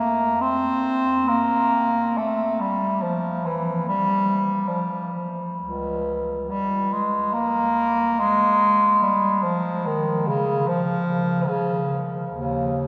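A wet cathedral reverb with a very long decay surrounds this recording, and the listener seems placed further back in the room. Within that resonant space, a single bass clarinet plays alone from 0.0 to 12.9 s, its tone clear yet distant, sitting up front in the mix while still carrying the roomy glow of the hall. This is a classical piece in a free, expressive style, with uneven beats and rubato phrasing over a loose 4/4 pulse. The solo line moves between Db2 and C4. The mood is serene and lyrical, and this short passage is cut from a longer work.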